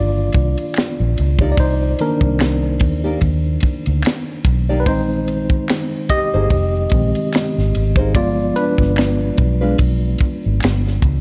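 A worn, slightly out-of-tune tine electric piano with light overdrive leads this short soulful neo-soul and R&B fragment, playing solo up front through its built-in speakers over Cm9, Bb9sus4 and G7b9 chords. A round, foam-muted vintage bass and a tight funk kit with a high-tuned snare, ride cymbal and finger snaps hold a smooth, swung groove alongside egg shaker and group handclaps. A fingerpicked nylon-string guitar adds a classical second line from 1.4 to 9.8 seconds, all within a dark production and small-room ambience.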